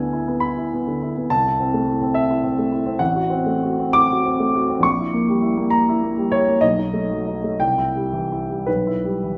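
A smooth, vintage-toned grand piano sits up front in this brooding, stormy romantic character piece for solo piano in A minor, unfolding in a rubato 6/8 at roughly 53-71 BPM in dotted quarters, spanning A1 to D6 through restless diminished and dominant harmonies from E7/D to Em/B, all bathed in the wet reverb of a recital hall across a 9.4-second fragment of a longer work.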